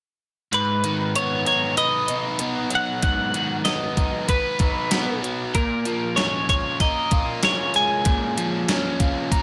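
Indie rock with a cool, bittersweet mood, this short excerpt moves from G#m7 to A#m7 at 5.5 seconds over a straight four-beat pulse. A bright, clean twelve-string electric guitar carries the compressed melody with slapback echo, while a biting, overdriven, double-tracked guitar plays a picked riff up front. Alongside them, a gated 80s digital drum machine supplies a thumpy kick, hi-hat and gated-reverb snare, its saturated, sampler-style sound re-recorded in a small room, with light reverb over the whole mix.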